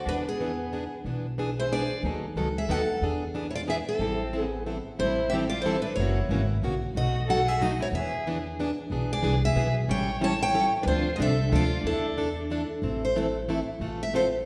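A bright, up-front picked steel-string acoustic guitar carries the melody in this swinging, fiery excerpt of jazz manouche in 3/4, its fresh strings showing finger squeak, and it takes a solo from 12.8 s. A rich bowed violin weaves an expressive second line with vibrato, portamento and a soft attack until 12.7 s, while a plugged-in steel-string acoustic guitar picks a warm accompaniment and a woody, thumpy pizzicato upright bass holds the low end. The players sit in the reverberant ambience of a church or concert hall.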